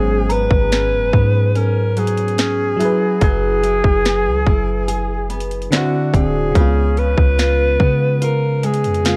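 A mellow alto saxophone carries the melody up front in a smooth, jazz-style solo voice, its vibrato and scooped notes giving this moody contemporary R&B fragment a feeling of longing. Beneath it, an FM electric piano with a bell-like attack and chorus fills out the harmony, while a nylon-string guitar adds fingerpicked classical arpeggios. A soft, round 808-style bass sits deep and dark near the front, and from 0.3 seconds a trap drum kit joins with a hard-clipped, overdriven kick, sharp snare and metallic hats. At the same moment a crystalline synth bell glints in the background through chorus, phaser and tape echo, gone by 1.4 seconds. The passage has a dry, intimate sound coloured by the worn, warbling pitch drift of old cassette tape, moving through G#m11, F#9sus4, D9 and C#7.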